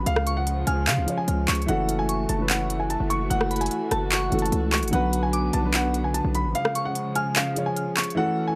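Melancholic and eerie, this half-time trap excerpt at 148 BPM in F# minor sets a warm, intimate grand piano melody with audible action noise over a second, dark and mellow grand piano accompaniment and close, bowed strings playing sul tasto chords, while a soft, warbling FM synth bell traces a second line in the background through chorus, phaser and delay until 7.3 seconds. Up front, a hard-hitting, punchy 808-style bass with a noise layer drives the low end before stopping at 6.5 seconds, alongside an electronic trap kit with crisp hats, handclaps and rim clicks. The chords move from C# through F#m7 and Bm back to C#, the kick drops out from 6.5 to 8.2 seconds, and light studio reverb frames the sound.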